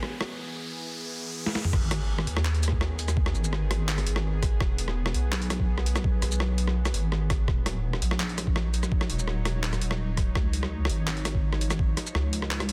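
A deep, dark wobble bass sits up front in this cinematic, spacious half-time drum and bass cut at 167 BPM in G# minor, joined by a gritty, pitched-down boom bap kit with a high-tuned snare and a thumpy overdriven electronic kick that enters at 1.7 s on the drop after an electronic riser and drum fill, while a tense, string-like bowed drone with vibrato and vintage 12-bit grit holds sustained chords moving from E through G#m, E and D#m7 to C#add9 in a dense, heavily limited mix.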